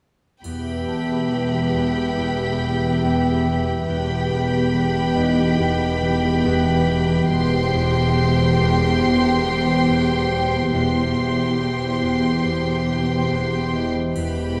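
Cinematic suspense film score at 70 BPM in E harmonic minor, tense and eerie, moving from Em to C/E as a distant, focused violin section holds a high melody over a close, expressive second violin line, with glassy, beating glass harmonica chords, a ringing, fingerpicked harp riff low in the background, a smooth, even cello bass alongside a rich, focused double bass section, a mellow soft-mallet vibraphone texture entering at 0.9 seconds, and a triangle heard only from 0.4 to 2.1 seconds and again at 14.2 seconds, all set in a scoring-stage reverb.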